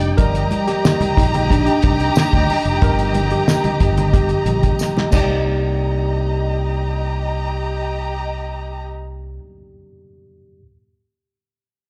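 A straight 4/4 groove carries this lush, bittersweet 1970s-style soul fragment, heard live through a club PA with a touch of room reverb. A worn, slightly out-of-tune tine electric piano takes the solo until 5.5 seconds over Ebmaj7/G moving to Cm7, framed by a warm, vibrato-rich studio violin section and a growly, overdriven fingered bass sitting up front. A cloth-damped, thuddy drum kit with a fat snare and dark cymbals closes its part with a fill, stopping at 5.3 seconds, while ringing congas and a jingly tambourine add faint, dry color underneath.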